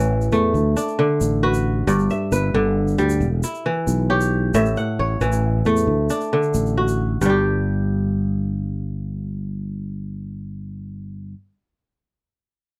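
In a dark, lightly reverberant mix, this hypnotic excerpt of West African string music in 12/8 sets a ringing, crisp, fingerpicked kora playing up-front arpeggios over a growly, direct fretless electric bass through a cycle of A, D, G and E minor chords, while a grainy, close egg shaker sits low in the background until 7.4 seconds, shortly after the harmony drops away into a chordless passage at 7.2 seconds.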